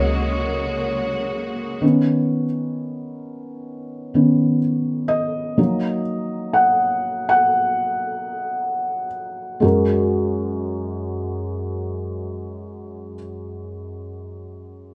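Tender and heartfelt, this pop excerpt opens with a brief moment of fuller sound before settling into an intimate piano passage. A felt-muted upright piano carries the accompaniment throughout, its soft, mellow tone sitting up front with the thick, dark quality of heavy felt. For the first 1.8 seconds, a lush string section holds smooth bowed chords with vibrato, while a round, punchy electric bass with a dark, foam-muted tone supports it from below. Both then fall away, leaving the piano alone until 9.6 seconds as the pace gradually slows, moving through gentle add9 harmonies and a turn to a minor chord. A new section begins at 9.6 seconds, returning to the opening harmony. The whole performance has the feel of a band playing together in one studio room, bathed in a moderate, spacious reverb.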